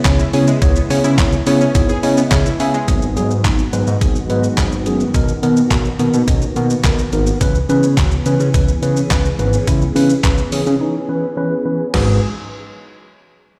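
Through a big sound system in a bare stone room, this confident, energetic dance-pop cut at 106 BPM in G# minor rides on a thumpy, tape-warm 8-bit drum machine kit up front, with kick, snare, hi-hat, shaker, handclaps, toms and crash, under a fat, detuned sawtooth bass that pumps to the sidechain. A mellow tine electric piano carries the accompaniment, filtered and pumping, with a fill at 1.8 seconds, while a silky, dark string machine holds chorused chords in the background over changes from C#m7 through G#m7 and Bmaj7. A bright, round analog pluck spins chorused, delayed arpeggios only until 2.9 seconds, and a break arrives at 10.8 seconds before the excerpt returns to G#m7.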